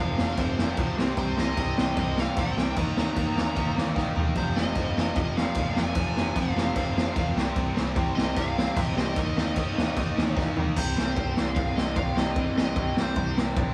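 A nasal, overdriven lead guitar with a parked wah carries the melody over two bright, distorted rhythm guitar riffs and a growly, picked electric bass from the very start, joined at 0.2 s by a gritty, boomy, up-front garage drum kit that throws in short fills, as this urgent, raw punk rock excerpt in C minor charges along at 150 BPM in a stone room, with one rhythm guitar dropping out at 10.8 s when the passage moves into a new section.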